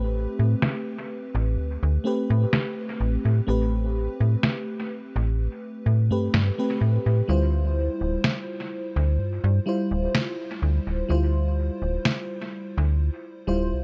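Vaporwave at a slow 63 BPM in A minor, this short excerpt from a longer piece has a woozy, melancholic mood, drifting from Am9 to Dm11 at 7.3 seconds. An FM electric piano with a soft pad layer carries the accompaniment throughout, its lush, dreamy tone detuned and shimmering with subtle chorus and a dub echo trailing behind. Underneath, a slap-like FM bass sits up front with a snappy, metallic attack that then decays, thickened by tube saturation and louder than the other parts. An electronic snare drum enters at 0.6 seconds and stops at 12.3 seconds, a sampler-style, medium-tuned hit that sounds tape-softened and re-recorded in a small room, muffled by low-pass filtering and thrown into dub echo. The mix is dry in terms of reverb but heavy with echo, and its cassette-tape character adds to the hazy, faded feel.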